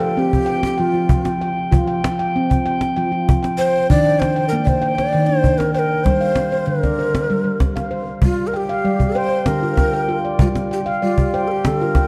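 A ringing stainless-steel handpan anchors this gentle, hypnotic piece of meditative world music, its fingertip-struck arpeggios sitting up front in a boxy small room. A breathy, low Native American-style wooden flute carries the melody with vibrato, tongued notes and an audible chiff, its unsteady, woody tone trailed by a diffuse ambient delay. The cajon joins at 0.3 s with a close, acoustic sound and faint snares, keeping a 7/8 pulse alongside the other two. The harmony moves from F5 to E-flat to G minor, and the music shifts into a new section at 8.2 s. A wet echo chamber reverb and a dark, warm production wrap the trio in a soft haze, and the recording is cut from a longer piece.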